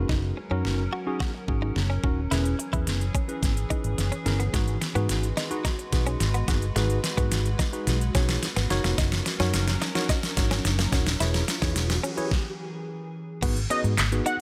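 Dance-pop at 108 BPM in G# minor, this driving, bittersweet passage, cut from a longer piece, builds steadily over a loop of D#m7, E6 and G#m7 chords. Electronic drums hit hard up front, with a knocking kick, deep snare, crisp hats, handclaps and crash cymbal all roughened by overdrive, while a dark, round, foam-muted fingered bass pumps against the kick. A worn, slightly out-of-tune tine electric piano carries the accompaniment beside a clean, picked guitar riff recorded direct and thickened by analog chorus, as a glassy, ethereal FM pad holds long, slow-blooming chords until 12.3 seconds. A very quiet riser creeps in at 6.7 seconds under a continuous drum fill, and both the pad and riser fall away at 12.3 seconds as the harmony breaks off for a stop. At 13.7 seconds a fat, detuned sawtooth lead with a sub octave, filter sweep and vibrato arrives high in the register as the G#m7 chord returns, all set in light digital ambience.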